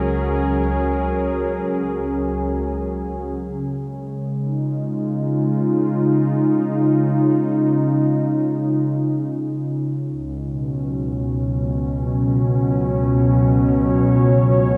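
A warbling, detuned vintage analog pad sits up front with a subtle chorus, holding luminous, weightless sustained chords from Gb/Db to Db and then Cbsus2/Db at 10.1 s in this ambient fragment, while a lush, distant bowed double bass section hums a low Db only until 3.4 s, all bathed in a wet concert hall reverb.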